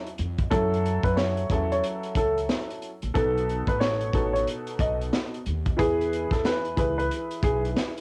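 A home cassette recording with light reverb carries this reflective yet tough boom-bap hip-hop cut, its sixteenths swung for a loose groove. Crunchy, saturated breakbeat drums sit up front with a tight kick, high-tuned snare and hi-hat, while a woody pizzicato upright bass on gut strings thumps beneath a worn, slightly detuned upright piano comping through F#m7, B7 and E. From 0.5 seconds a second, warm upright piano, filtered and tape-coloured, carries the melody above.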